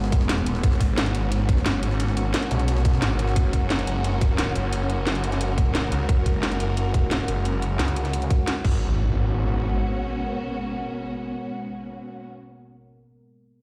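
Dark and mechanical, this excerpt of technical drum and bass in G# minor at 176 BPM drives a snarling, detuned saw bass under a tight, up-front electronic kick and a cracking drum and bass kit with metallic hats, while a gritty, pitched-up jungle kit sits in the background until 3.4 seconds, a deep, evolving ambient pad and lush bowed strings with vibrato pump against the sidechain over G#madd9 and F#add9 chords, and an electronic impact arrives at 8.7 seconds, all heard through the stone room reverb of a bare room.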